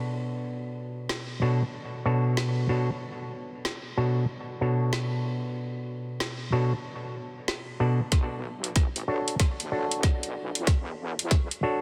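A dense, heavily limited modern mix with moderate plate reverb frames this funky, gritty glitch hop fragment, swung on the sixteenths and cut from a longer piece. An up-front auto-wah clav plays stringy, percussive stabs over a Bm9 chord through a combo amp, with sidechain pumping, low-pass filtering and delay, and a layered drum kit with a woody snare and metallic hi-hats joins at 1.1 seconds. At 8.1 seconds a build-up and drum fill begin as a tight, up-front electronic kick and a heavy, saturated, detuned sawtooth wobble bass with chorus enter, both stopping at 11.5 seconds.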